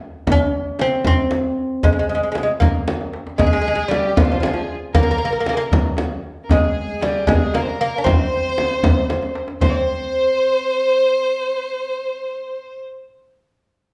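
A deep tombak sits in the background from the very start of this melancholic, hypnotic Persian modal ensemble piece, which is cut from a longer performance in 6/8. Almost at once a large, up-front frame drum played with hard hands joins in, along with a bright, delicate fingerpicked lute whose nylon double strings, some doubled at the octave, carry the melody close to the listener. After a short drum fill, a single bowed violin enters at 3.4 seconds, placed up front yet with a distant quality, its expressive line marked by vibrato and portamento. Alongside it, a biting, earthy chamber violin section with light vibrato adds a second line. Both drums stop at 9.9 seconds, and the lute and violins carry the closing passage on their own. The band plays live in one room, bathed in a lush studio reverb.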